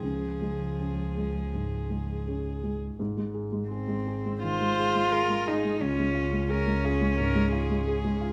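From the first moment, a felt-muted upright piano, a cello, a viola and a bowed double bass sound together in this intimate, tender fragment of neoclassical chamber music. The piano sits up front with a soft, mellow, natural tone, its accompaniment reaching from low in the bass register up into the middle. The cello carries the second line close to the listener, played sul tasto with light vibrato and an airy bow, while a single viola adds a gentle accompanying voice above it with the same soft attack. Beneath them, one double bass gives a dark, woody foundation with a smooth top. The pulse moves freely in a rubato four, and the harmony shifts from Db to Ab at 3.0 seconds and back to Db at 5.8 seconds, set in a light reverb.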